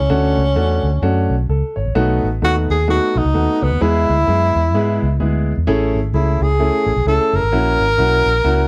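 A breathy tenor saxophone and a dark, foam-muted electric bass open this cut from a longer uptempo 1960s-style soul piece, with a grand piano joining at 0.1 seconds. Set at 129 BPM in 4/4 with lightly swung eighths in A major, the music has a joyful, warm mood. The saxophone carries the melody up front as a jazz-style solo, its soft attack, vibrato and scooped notes treated with slapback echo and plate reverb. Below it, the vintage bass sounds round, punchy and amped, while the smooth, vintage piano fills in the accompaniment, also placed up front. The harmony moves through Dmaj7, B7, E, Amaj7 and F#7, and the dark production with light reverb gives the whole short passage a cozy, period feel.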